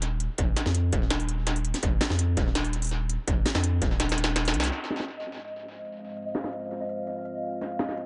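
A thick, saturated sub bass and an industrial drum kit open this cinematic, spacious half-time drum and bass excerpt, with a distorted electronic kick joining almost at once. The kit sits up front, its clanging snare and smooth hats dulled by low-pass filtering and trailed by tape echo. After a drum fill and a full-band accent, the bass drops out at 4.7 seconds, the harmony moving from a bare F power chord to F minor as a filter sweep washes over the drums. A pulsing, detuned gated texture holds a single high note from 4.9 seconds, softened by chorus and reverb. At 5.7 seconds a deep, moody pad arrives with slow-attack, wave-folded chords that pump against the beat and bloom into a long, dark tail. The echo-heavy mix keeps a light reverb and a muted top end throughout.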